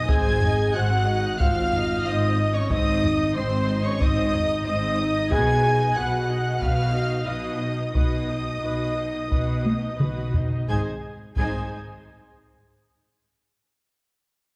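Two bowed violin sections open this triumphant, heroic orchestral film cue at 91 BPM in 4/4, one carrying a lush, vibrato-laden melody high above while the other holds a clear, intense second line set back in the background. A chamber viola section fills the middle with focused accompaniment, and dark French horns sustain chords beneath mellow, roomy trumpet stabs. From 0.1 s, woody double basses and a smooth-topped cello section anchor the bass, and a close taiko ensemble struck with hard sticks drives the uneven pulse, sitting loudest in the mix. The harmony moves from Ab to B at 5.3 s and back to Ab at 10.7 s, just after a taiko fill that runs from 9.7 s. A wet scoring-stage reverb and a dark production give the passage a heroic sense of scale, and it comes from a longer piece.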